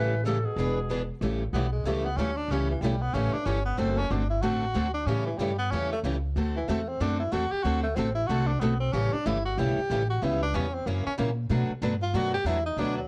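A cassette-tape sheen and a moderate studio room frame this lively, swinging slice of acoustic string swing in the jazz manouche style, moving at 187 BPM in A mixolydian. A breathy clarinet with vibrato and scooped notes opens the melody, its smooth top touched by plate reverb, but it drops away after just 1.1 seconds. From 1.2 seconds the clear, present tenor saxophone takes a solo, up front with light vibrato and scooped phrasing, running through dominant seventh changes before a turn through C#m7b5 and F#7 to Bm7 near the close. Underneath, two picked steel-string acoustic guitars accompany, one bright and concert-voiced, the other boxy and parlour-toned, sitting in the background. An upright bass with gut strings plays pizzicato, thumpy and woody, anchoring the low end up front.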